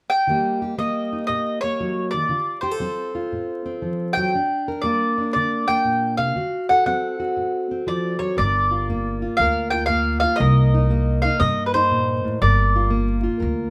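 Acoustic country blues with a smoky, mournful mood, this short cut from a longer piece moves at 118 BPM in 4/4 with a swung eighth-note feel, settling into G minor from 8.4 seconds. A bright, round mandolin carries the melody up front, its picked double strings ringing between B4 and G5. Beneath it, a fingerpicked, plugged-in jumbo steel-string acoustic guitar supplies full-bodied accompaniment through changes such as Eb7, D7#9 and Gm. At 8.4 seconds a woody pizzicato upright bass with steel strings joins, sitting low from G1 to G2 as the harmony turns to Gm7 and Cm7. Light reverb and a layer of vinyl crackle give the sound an aged patina.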